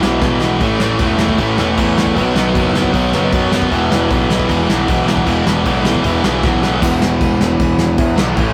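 A straight 4/4 pulse at 154 BPM drives this rowdy, energetic punk rock cut in E major, taken from a longer piece. A soft brush drum kit with a punchy kick, medium-tuned snare and crash cymbal kicks things off with a quick fill at 0.2 seconds and drops another just before the music shifts into a new section at 6.8 seconds. Three overdriven electric guitars stack their riffs over an E, A, B and back to E progression: a biting, double-tracked one and a crunchy one sit in the background, while a bright distorted guitar plays its riff until it stops at 7.0 seconds. Underneath, a picked electric bass carries a growly fuzz tone, heard both direct and through an amp. The whole thing has the rough feel of a rehearsal-room recording, with warm saturation and a moderate stone room reverb.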